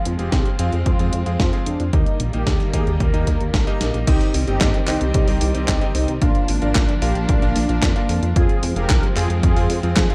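A straight 4/4 pulse at 112 BPM drives this bittersweet, melodramatic italo disco piece in C minor, with a punchy analog kick sitting up front from 0.3 seconds alongside a sampler-style 80s drum machine whose snare, handclaps, hi-hat and crash cymbal carry gated reverb. A glossy, retro synth bass with a pulse-wave and sawtooth tone, a plucky filter and tube saturation anchors the low end and is the loudest melodic part. Over it, a round, brassy synth brass line carries the melody with chorus and phaser, while a bright electric grand piano adds cutting, clangy stabs. A dark studio string section holds soft-attack sustained chords in the background with light vibrato. The harmony moves from Fm to Eb, then a drum fill at 3.8 seconds leads into a new section at 4.1 seconds that runs through Cm and Bb back to Fm. The dry, dark production gives this excerpt from a longer piece a warm feel.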